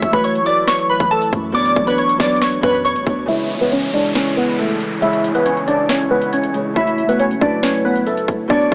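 A half-time trap beat of overdriven, hard-clipped kick, sharp snare, metallic hats and finger snaps drives this brooding, eerie hip hop excerpt, where glassy, airy digital keys with chorus carry the melody up front over a bright, fingerpicked Celtic harp and a moody, detuned analog pad with slow attack and long release, while a deep, boomy 808-style bass sits in the background until 3.3 s, an electronic downlifter passes from 3.3 s to 6.8 s as a filter sweep runs to the end, and vinyl crackle, small-speaker sound and light reverb tint the recording.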